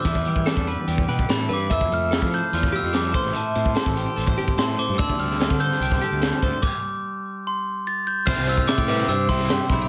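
A ringing, bell-like glockenspiel melody played with soft plastic mallets sits up front over bright, twangy clean twelve-string electric guitar comping, a second warmer twelve-string guitar playing arpeggios in the background, a round fuzz-overdriven fingered bass and a crisp fusion drum kit with a high-tuned snare, punchy kick and pumping small-room sound, all driving a restless, wistful math rock and midwest emo passage at 146 BPM in 4/4, tuned to A4 = 437 Hz, moving through Em7, Fmaj7, Am7 and D7sus4 before a stop at 6.6 seconds, after which a biting, double-tracked overdriven guitar riff enters at 8.3 seconds on a Cmaj7 chord as this fragment of a longer piece cuts off.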